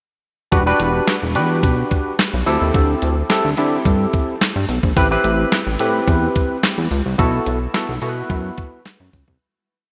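Early-eighties boogie funk in E minor at 108 BPM, funky and danceable, with a crisp 8-bit drum machine laying down a mid-tempo boogie beat of thumpy kick, fat snare layered with handclaps, and hi-hat. A glossy, saturated chorused synth bass plays a fat syncopated line with slides and chromatic approach notes, while a barky, lightly overdriven tine electric piano with analog chorus adds syncopated rootless chords and grace notes over Em9, D7sus4, Am7 and B7sus4. The dreamy mix is soaked in a huge ambient reverb, and the piece fades out from 7.2 seconds, with the electric piano dropping away at 8.8 seconds.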